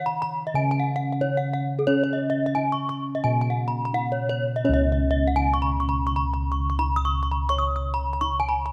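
A bronze metallophone opens at 0.1 s with ringing arpeggios struck by a wooden mallet, its paired tuning producing shimmering beats in a dry, close, up-front sound. From 0.5 s, bossed gongs add a round, dark, smooth bass with beating in the tone. This ceremonial, brilliant fragment of Balinese gamelan, cut from a longer piece in a straight four, moves through two sections, the second starting at 4.6 s, with detailed close microphones and light reverb.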